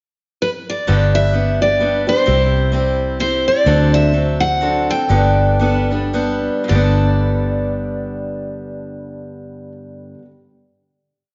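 Bathed in the lush reverb of a recital hall with softened highs, this short, sunny and easygoing honky-tonk and classic country piece in G major sways in a swung 3/4 at 104-130 BPM. A full-bodied dreadnought acoustic guitar picks a motif-based song melody with finger squeak over a bright, boxy parlour guitar strumming eighths in open chord shapes and a dark, round, punchy foam-muted electric bass playing root and fifth, all three up front. A solo guitar pickup bar opens the piece, the accompaniment and bass join at 0.9 s, the pace slows from 3.7 s, and a held final chord arrives at 6.7 s.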